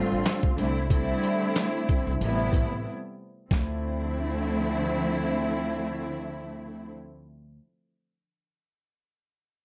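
Worn, warbling cassette tape and a moderate studio reverb color this dark, gritty boom-bap hip-hop fragment, where compressed, pitched-down sampler-style drums with a thumpy kick, medium-tuned snare, hi-hat and handclaps sit up front until 3.7 seconds, a bowed string ensemble sings with soft-attack vibrato and expressive portamento over rich ninth chords, and a woody pizzicato upright bass carries on alone to 7.6 seconds.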